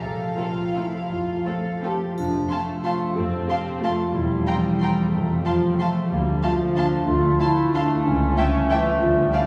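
A festive, elegant orchestral ballroom waltz in F major opens with a light-vibrato violin section singing the melody over mellow, ringing thumb-plucked harp arpeggios, a soft-edged double bass section and a soft-edged cello section in the background, with a second warm violin line and a rich viola accompaniment joining at 0.4 s, a dark, up-front solo clarinet adding a second line from 2.2 s alongside a brief, faint triangle touch, all moving in a flexible rubato 3/4 at 158-200 BPM through F, C7/E, Dm7 and A7/C# beneath a long cathedral reverb that ends abruptly, as it is cut from a longer piece.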